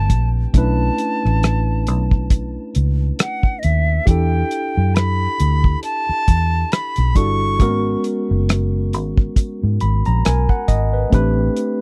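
Introspective and late-night, this short neo-soul R&B excerpt moves through minor eleventh chords over a lightly swung sixteenth-note feel, captured dry and close in a 1970s studio style. A pure, softly attacked silver concert flute with vibrato carries the melody until 8.0 s, while a bright, barky, clean tine electric piano accompanies and adds a fill from 9.4 to 11.1 s. Underneath, a round, punchy, foam-muted vintage fingered electric bass and a cloth-damped, thuddy drum kit of hi-hat, tight kick and rim click sit up front, both dark in tone.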